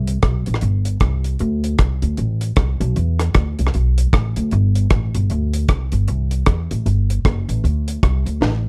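Energetic and mischievous, this short ska fragment with a lightly swung eighth-note feel pairs a woody, thumpy pizzicato upright bass on steel strings with a dry, smooth acoustic reggae drum kit of hi-hat, tight kick, rim click and high-tuned snare, both sitting up front in a dark production with little reverb, before a drum fill arrives at 8.4 seconds.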